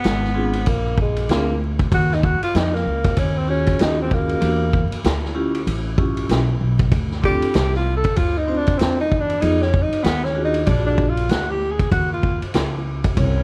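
Over a lightly swung 4/4 groove, this cool jazz-hop fragment sets a breathy tenor saxophone soloing up front with a whispered subtone, soft attack, vibrato and scooped notes over chords that drift through minor and altered dominant colors. A woody, thumpy pizzicato upright bass on gut strings and a punchy vintage drum kit with dark cymbals and a rolled-off top hold the pulse, while a bright, ringing vibraphone with a slow motor vibrato comps from 0.3 to 11.1 seconds. A small room reverb, dark, warm production and vinyl crackle lend the whole passage a cool, warm glow.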